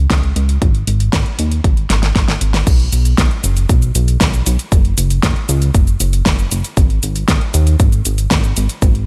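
A straight 4/4 synthwave groove, moody and nostalgic, drives this brief cut from a longer piece, with a punchy, tape-warm electronic kick and a layered pop kit of fat snare, metallic hi-hats, cabasa and crash sitting up front over a glossy, chorused pulse-and-sawtooth synth bass that pumps with sidechain, while a drum fill at 1.9 seconds leads into a new section at 2.7 seconds, all in a digital ambience.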